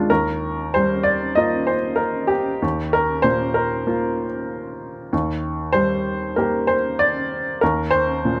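A close, detailed recording with little reverb puts a clear upright piano up front, its woody, intimate tone and short sustain accompanied by audible action noise. This brief neoclassical minimalist piece is cut from a longer work and plays at 96 BPM in 4/4, with a rubato feel that lets the time breathe. The solo piano carries everything across its 8.4 seconds, spanning Eb2 to Eb5. The harmony rests on Ebadd9 before moving to Gm/Eb at 5.1 seconds. The mood is hopeful and peaceful, with a natural, unadorned sound that feels like sitting beside the instrument.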